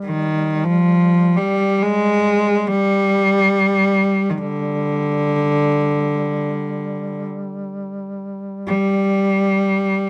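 A biting, nasal cello carries the melody up front, its bowed line edged with light vibrato and an airy bow as it moves through a mournful, longing Caucasian lament in free time. Beneath it, a warm duduk holds a steady drone in the background with its own vibrato from 0.0 to 9.9 seconds. The sound is dry and close, in the manner of a 1970s studio, with a light touch of reverb across this brief excerpt from a longer folk piece.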